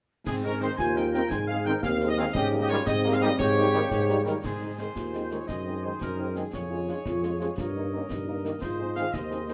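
A mellow tuba sits up front with a smooth top and soft attack, anchoring the bass of this festive, spirited military-style march for wind band in 6/8 with a straight feel, cut from a longer piece. Above it, a tight trumpet section carries the melody with a clear, lightly vibrato-touched classical tone, while a smooth-topped woodwind section and a close-miked euphonium fill in supporting lines. A pure, expressive flute section adds a soft second line in the background until 4.4 seconds, when the music moves into a new section. Behind them, a distant, roomy French horn section provides accompaniment, and a trombone section enters at 0.6 seconds with sustained chords. A concert snare drum, clash cymbals with a dark edge, and concert bass drum sound close and dry against the rest of the band, which is bathed in the glow of a large studio reverb.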